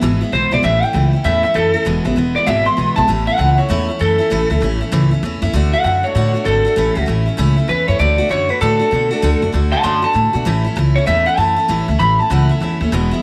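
Swung eighths drive this rowdy, rollicking rockabilly excerpt, where a thumpy, woody pizzicato upright bass and a full-bodied, picked dreadnought acoustic guitar sit up front beneath a twangy, slightly broken-up electric guitar through a small old amp, whose bright, lo-fi tone trails tape echo as it carries the melody and takes a solo from 3.1 s, set in a small room with light reverb.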